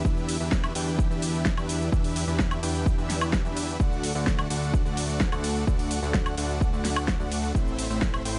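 A driving straight 4/4 pulse at 128 BPM anchors this anthemic, powerful festival progressive house cut in E minor, where a punchy, up-front electronic kick, an overdriven pop drum kit with a fat snare, cabasa, hi-hat, ride cymbal and woodblock, and a fat analog bass with a moving filter sweep and sidechain pumping all sit beneath a huge, detuned supersaw riff washed in digital delay, moving from Em7 to D and onto Am in a dry mix.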